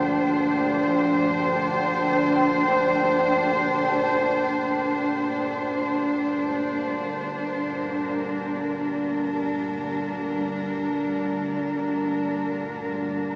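Up front and intimate, a cello section bowed sul tasto with light vibrato and a soft attack holds sustained chords through this cavernous stretch of dark ambient drone, cut from a longer piece. Beneath it, a calm, detuned, organ-like drone with ensemble chorus hums in the background. A grainy, flickering granular texture with analog chorus glimmers high until 4.7 s, and from 6.1 s an eerie, inharmonic FM bell with chorus and phaser plays arpeggios, barely audible, all within a dreamy mix soaked in lush hall reverb that keeps a small speaker sound.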